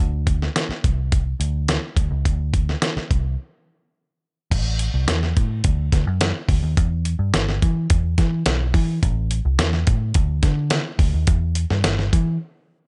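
A gritty, compressed soul drum kit with a thumpy kick, fat snare, hi-hat and crash sits up front beside a dark, round, foam-muted picked electric bass in this urgent, driving uptempo 1960s-style soul excerpt at 106 BPM in a straight 4/4, dry and dusty-toned, with a break at 3.4 seconds before the bass carries on to 12.4 seconds.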